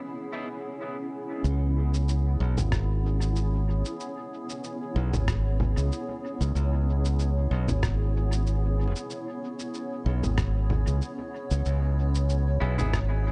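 A dark, warm ambient dub passage with a spacious, meditative mood opens on a blurred, slowly evolving granular cloud pad holding a mellow, reverberant chord, joined at 1.4 seconds by a punchy, up-front fingered electric bass and by a muffled, pitched-down electronic shaker, congas and rim click steeped in dub echo, with a thumpy sampler-style kick arriving at 2.7 seconds to sit in the background and a clean, hollow-body electric guitar stab, filtered, wavering with vibrato and echoed, flickering in at 12.6 seconds.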